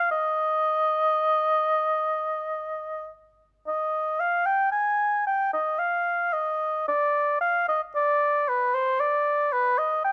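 A mellow oboe plays alone, up front with light vibrato and a smooth top, in this introspective, flowing baroque-style fantasia in 3/4, taken at a rubato 50-57 BPM. Its line moves between B4 and Ab5 over about 10.1 seconds, a short cut from a longer piece. Close, detailed microphones catch the solo in light reverb, with a faint mains hum beneath.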